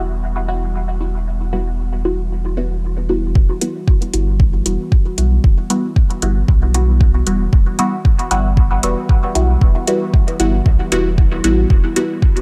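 Opening on an Emadd9 chord, a warbling, lo-fi pad with chorus and its own reverb sits in the background while muted, detuned dub chord stabs with phaser, tape character and dub echo undergo a filter sweep over a round sine sub bass, all three pumping against the sidechain. At 3.4 s a deep, up-front kick arrives with metallic hi-hats just after, settling this nocturnal dub techno groove at 115 BPM in E minor with a 55% swing on the sixteenths. The production is dark and dry, a brief cut from a longer piece.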